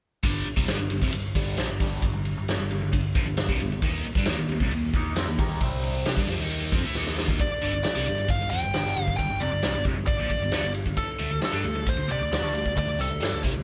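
Driving and menacing, this hard rock passage in G minor moves at 134 BPM in a straight 4/4, cut from a longer piece. A cranked stack guitar, bright, double-tracked and run through overdrive and a phaser, plays the riff from the start, over power chords moving from G5 to Eb5, C5 and back. Beneath it, a growly, punchy overdriven electric bass and a big acoustic drum kit, with a punchy kick, medium-tuned snare and ride cymbal sitting up front, carry the groove. A drum fill at 7.0 seconds leads into the second half, where a nasal lead guitar with a parked wah enters at 7.4 seconds, its overdriven tone up front as it carries the melody. The band sounds as if playing live in one room, with little reverb.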